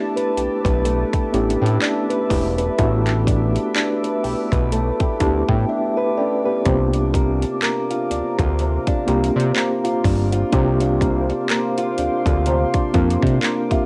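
Contemporary R&B at a slow 62 BPM with a swung sixteenth feel, moody and longing, cut from a longer piece and carrying the soft haze of a home cassette recording with light reverb. A mellow tine electric piano plays accompaniment while a boxy, fingerpicked ladder-braced acoustic guitar with audible finger squeak picks arpeggios, both over a deep, warbling ambient pad with chorus, while an up-front trap kit of hard-clipped kick, metallic hats and handclaps enters at 0.2 s and a fat, detuned sawtooth bass with a moving notch filter arrives at 0.4 s. The electric piano plays a fill from 4.7 s before a brief silent gap, and the harmony shifts from A9sus4 to C9sus4 at 6.7 s.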